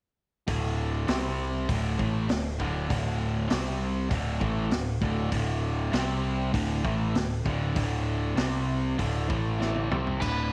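Set in a small room with moderate spring reverb, this swaggering, driving classic rock excerpt moves at 99 BPM in a straight 4/4, as a bright, double-tracked distorted electric guitar riff shifts between D5 and C5 chords over a growling, overdriven picked bass and a vintage drum kit with a punchy kick, high-tuned snare and dark cymbals. The drums play a fill from 9.6 to 10.2 seconds, and at 10.2 seconds a nasal lead guitar with a parked wah and slapback echo enters up front on a single note before the cut.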